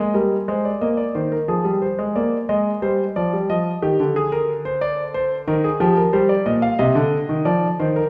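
A clear grand piano, present and up front with long sustain, plays alone from 0.0 to 8.1 seconds in this baroque-style two-part invention, ranging from Bb2 to F5 at a straight, stately yet lively 90 BPM in 4/4. The harmony moves through Eb/G, a D(b5) chord with its third omitted, Eb, Bb/D and Eb before settling on Cmadd9 at 6.8 seconds. A wet recital hall reverb places the listener further back in the room, and the passage is cut from a longer piece.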